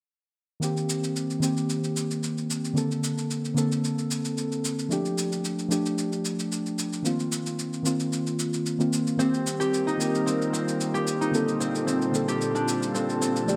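A straight cabasa pulse with a gritty, compressed sampled edge drives this meditative organic downtempo excerpt, where muted, felt-like synth keys sit up front with a dark, intimate tone softened by chorus, low-pass filtering and delay, until at 9.2 seconds an airy, breathy pad slowly swells in beneath them and a ringing, fingerpicked concert harp adds close arpeggios through delay, all bathed in a lush hall reverb with a bright 1980s-style digital sheen.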